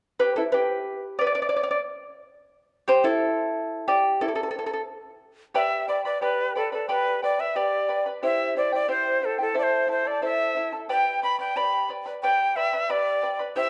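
Wistful and earthy, this Andean folk excerpt moves at 90 BPM in a straight 2/4, opening with the charango alone from 0.2 seconds, its fingerpicked double strings shimmering over chords of G and Dsus4 that alternate with chordless passages. At 5.6 seconds a breathy, reedy quena enters up front with tongued notes and vibrato, carrying the melody over the charango's mellow support through a G, C, Am and back to G progression. A recital hall reverb surrounds the pair, lending the dark, warm production a sense of space.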